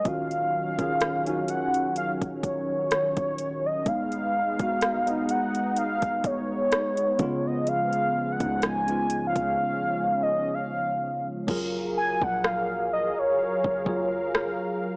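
An unhurried, lightly swung 4/4 groove comes from an electronic R&B drum kit that sits up front, overdriven, with a soft kick, metallic hi-hats, rim clicks and a crash cymbal; the hats fall silent at 11.5 seconds as the music moves into a new section. This late-night, sensual contemporary R&B passage is cut from a longer piece. A velvety synth lead, blending sawtooth and triangle tones with chorus, vibrato and tape echo, carries the melody up front, while a worn, slightly out-of-tune tine electric piano, lightly overdriven as if through built-in speakers, plays the accompaniment. A detuned analog pad with a soft attack and chorus holds sustained chords underneath, and a clean, sine-like 808-style bass booms deep and dark in the background. The recording is dry and gritty, with transformer saturation, a small-speaker sound and a light digital reverb, over chords moving from Ebm9 through B69/D# and Db7 to Gbmaj9.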